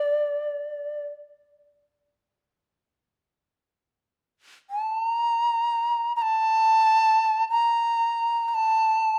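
A moderate recital-hall reverb surrounds this calm, austere fragment of traditional Japanese chamber music, cut from a longer piece. A lone shakuhachi, airy and reedy with soft attacks and vibrato, sits up front, sounding a brief phrase that stops at 1.1 seconds and then returning at 4.7 seconds to carry the rest.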